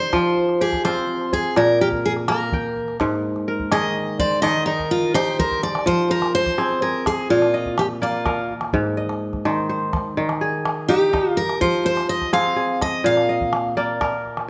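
A full-bodied picked steel-string acoustic guitar leads this hypnotic, flowing West African string and xylophone piece, carrying the melody up front in a bright, jumbo-sized voice and taking a solo through the opening section until 5.9 seconds. Beside it, a crisp, ringing kora spins fingerpicked arpeggios across a broad range, sitting equally forward in the mix. Underneath, a deep, band-limited calabash with a vintage character keeps the percussion low in the blend and adds a short fill just before the second section begins. The music moves in a straight 12/8 at 84 BPM counted in dotted quarters, set in F dorian with the tuning at A4 = 441 Hz, and circles through Fm, Bb, Ab and Eb chords. A moderate recital hall reverb gives the excerpt an open, resonant space, and the guitar drops out at 13.7 seconds as this segment of a longer piece closes.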